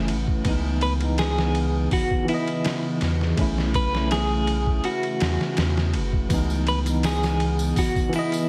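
A dry sound with an audible vinyl crackle frames this dark, melancholic trip hop excerpt in C# minor, moving at 82 BPM in a straight 4/4. A sampler-style drum kit, gritty, pitched down and compressed, sits up front with a thumpy kick, a medium-tuned snare, hi-hat and ride cymbal, its tone carrying the grain of a small room. Beneath it, a round sine sub bass holds the low end until 7.7 seconds, while a mellow tine electric piano with tremolo plays the accompaniment and a warbling, detuned pad with chorus and built-in reverb sustains chords in the background. A bright, twangy clean electric guitar carries the melody between E4 and B4, colored by tremolo and tape echo. The harmony moves from C#m7 to B9sus4 and back, and a quiet layer of tambourine and triangle joins at 6.3 seconds.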